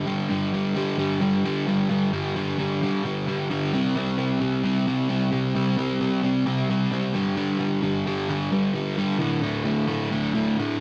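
A crunchy overdriven electric guitar, picked and double-tracked up front, carries this aggressive, menacing rock excerpt alone, grinding through power chords on G, C and D in straight 4/4, its gritty tone ringing in a wet stone room reverb that gives the rough rehearsal-room recording a cavernous edge.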